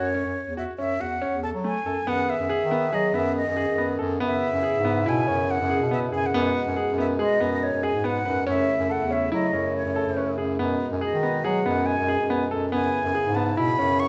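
Set in a moderate recital-hall reverb, this hypnotic, restless contemporary chamber piece in 5/4 at 141 BPM opens on F#m7, with a breathy, soft-attacked concert flute carrying the melody up front, a clear concert grand piano with audible action noise and long sustain rolling arpeggios, and a present, classical-style bass clarinet holding the bass line, before a reedy, mellow pedal harmonium enters at 2.1 seconds with sustained chords in the background.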